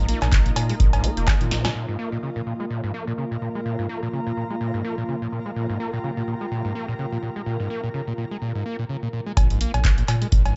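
This gritty, hypnotic acid house excerpt opens on a drop, with a deep, tape-warm electronic kick drum and a punchy analog drum machine of snare, handclaps, hi-hat and cowbell, re-recorded in a large room, over a thick, saturated sine sub bass. Driving everything at 126 BPM in 4/4 with a light 16th-note swing, a squelchy, resonant sawtooth acid bass riff carries filter sweeps, distortion, analog chorus and tape echo, sitting up front. Alongside it, a moody, detuned sawtooth pad holds dark sustained chords with a sub octave and chorus, while a cloudy granular pad adds a blurred, evolving texture bathed in its own reverb. A drum fill at 1.5 seconds leads into a stripped middle stretch where the kick, drum machine and sub bass drop out, leaving the acid riff pumping against the two pads. At 9.4 seconds the drums and sub bass return for a second drop as the pads drop away, and the dusky, softened top end keeps the whole mix murky under light reverb.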